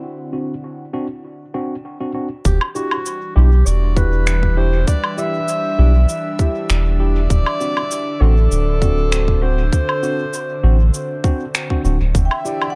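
The round, deep sub bass stands out most, sitting up front alongside a tight, tape-warm electronic kick from 2.5 seconds in this hazy ambient dub cut from a longer piece, moving at 99 BPM in 4/4 in E minor. Before that, an airy, breathy pad with chorus holds sustained chords while a worn, slightly out-of-tune tine electric piano played through a combo amp adds dub-echoed stabs under a filter sweep over a D7 chord, the harmony later moving between Em7 and D7. At 2.5 seconds a mellow, distant clarinet takes up a roomy, classical-style solo melody, and electronic shaker, woodblock and finger snaps, re-recorded in a small room, join with dub echo. In the closing moments a metallic, ringing vibraphone slips in with brief arpeggios, and a bubbling, resonant stepped-filter texture with chorus and its own reverb murmurs in the background. The whole mix is echo-heavy and low-pass filtered, giving it a deep, murky glow.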